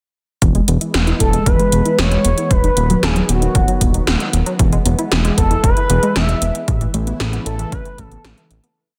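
Synthwave with an uplifting, nostalgic mood: a fat, detuned sawtooth bass drives eighth notes up front under a punchy machine kick and an 80s backbeat of gated snare and metallic hats, while a swirling phased pad and a gritty, delayed pluck arpeggio that drifts against the bar sit in the background, and from 1.2 seconds an expressive, nasal lead with vibrato and tape echo sings a motif-based melody before the piece fades out from 6.0 seconds.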